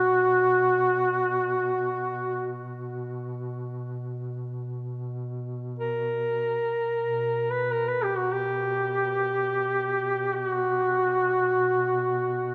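Caucasian folk lament in free time, cut from a longer piece, carrying a longing, solemn mood, where a warm duduk sings the melody between F#4 and B4 with vibrato and scooped notes, up front yet distant and roomy, over a mellow duduk holding a low B2 drone with its own vibrato and scoops, both playing throughout the 12.5 seconds inside a wet cathedral reverb that lingers for 6.8 seconds.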